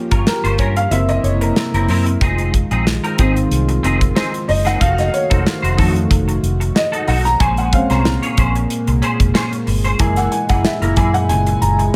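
A lightly swung 4/4 groove at 92 BPM drives this glossy, urban slice of polished 1980s jazz-funk pop, with a punchy kick, medium-tuned snare and hi-hat from an up-front studio kit sitting under a round, foam-muted fingered bass. A dark, mellow baby grand piano with lush chorus takes the solo throughout the 12 seconds, while a bright, clean, picked semi-hollow guitar riff and a shimmering, retro pulse-width pad with a soft attack fill out the harmony. The chords move through Gm7b5, Gb7#11, Fm7, F7b9 and Bbm9 before landing on Gb9, all framed by small-room ambience.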